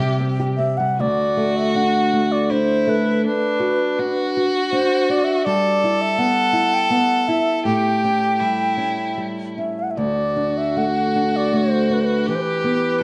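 The rhythm moves in an unhurried triple metre around 80 BPM, its beats stretching and yielding freely in rubato, as befits this nostalgic, tender Celtic slow air in D mixolydian. A wooden baroque flute carries the melody from start to finish with a pure tone, vibrato and tongued notes. Beneath it a clear, focused fiddle, played by a single bowed player with light vibrato and a touch of slapback echo, traces a second line in a lower register. A small, dark nylon-string guitar sits up front, fingerpicking the accompaniment through a progression that opens on C, settles on D at 1.0 seconds, and passes through Bm, Em/G and A7 before returning to D and ending on Em. The trio sounds as though it shares a moderate recital hall whose reverb lingers around 1.6 seconds, with the top end gently capped, and the passage is cut from a longer piece.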